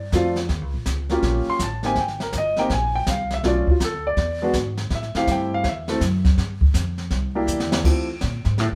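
Sophisticated and warm, this brief jazz piano trio passage swings briskly at 163 BPM in 4/4 and F major, cut from a longer piece. The concert grand piano carries the melody up front with an intimate, natural tone, deep bass and audible action noise, taking a solo from the start through 7.8 seconds. Beneath it, the pizzicato upright bass has a woody character with steel strings, while the drum kit, played with brushes, sounds airy and polished, with a high-tuned snare, a boomy kick, hi-hat and crash cymbal, and a drum fill closing the phrase at 7.5 seconds. The harmony moves through rootless Bbmaj9 and Eb7 voicings to Abmaj9, then Bm7b5, E7 and Am7, before Fsus2 and C9 resolve to Fmaj9. The trio plays together live in one room, with a moderate studio reverb lending a gentle sense of space.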